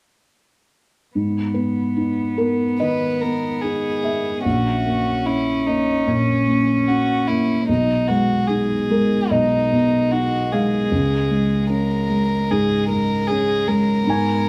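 Set in a moderate studio room where the players perform together, this longing, reflective neoclassical excerpt in G# minor drifts rubato at 74 BPM in 4/4, as a mellow, intimate felt-muted upright piano with a dark, vintage tone sits up front beside a rich, floating bowed cello line from 1.2 seconds, joined at 2.8 seconds by a pure, sul tasto solo violin carrying the melody over chords moving from G#m through A#dim and G#m/B to C#.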